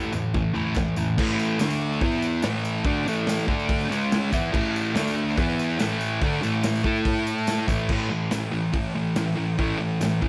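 A swaggering, raw garage rock excerpt in a straight 4/4, driven by an up-front, double-tracked fuzz guitar riff that moves through power chords on A, D, E and C# with a distorted, picked edge. Beneath it, a crunchy breakbeat drum kit sounds gritty and saturated, with a punchy kick, medium-tuned snare, dark cymbals and a rolled-off top in a small room. A bright, jingly tambourine sits dry in the background under light reverb.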